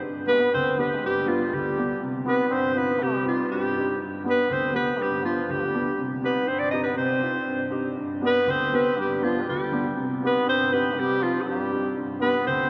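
A bright, punchy clarinet with light vibrato carries the up-front melody in this bittersweet, soulful klezmer passage at 120 BPM in 2/4, entering at 0.3 s alongside a nasal, smooth-topped, straight-muted trombone on the second line, over a woody upright piano with long sustain that alternates G and C minor chords in a lingering cathedral reverb.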